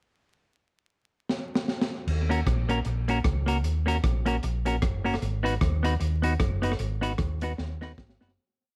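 A swung ska beat with side-stick backbeat kicks off this short, mischievous and energetic ska piece in Eb minor at 152 BPM, as the crunchy, gritty breakbeat kit with its punchy kick, high-tuned snare and dub echo opens with a fill at 1.3 seconds before a round, hollow-body fingered bass walks and slides in at 2.1 seconds and a twangy, clean electric guitar chops the off-beats over Ebm7 and Abm7, all under vinyl crackle in a small room until the fade-out begins at 6.8 seconds.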